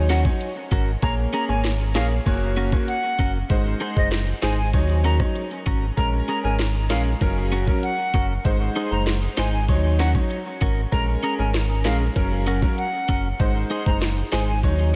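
Dancehall at 97 BPM in a straight 4/4, this hypnotic, sultry excerpt cycles through Ebm7, Bbm7, Gb and Ab over an up-front electronic island pop kit with knocking kick, sharp snare, rim click and hi-hats, plus a deep, mellow sine sub bass with octave. A clear concert grand piano supplies open accompaniment while a twangy, picked clean electric guitar plays arpeggios under subtle chorus and diffuse ambient delay. Above them, an airy, reedy wooden flute carries the tongued, vibrato-laden melody in close-miked detail, and a drum fill closes things out at 14.6 seconds, all within light reverb and digital ambience.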